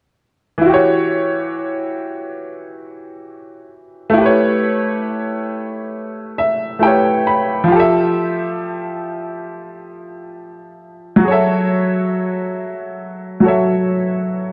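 A clear upright piano opens at 0.6 seconds, its woody, open tone placed up front and softened by a low-pass filter, spelling out lush extended chords at a slow, swung hip hop pace in a nostalgic, hazy mood. Partway through, the piano slips into a short fill around 5.9 seconds before settling onto a Fmaj9. The whole cut is steeped in a moderate plate reverb and the worn, warbling pitch drift of old cassette tape, and it ends at 14.5 seconds as a fragment lifted from a longer piece.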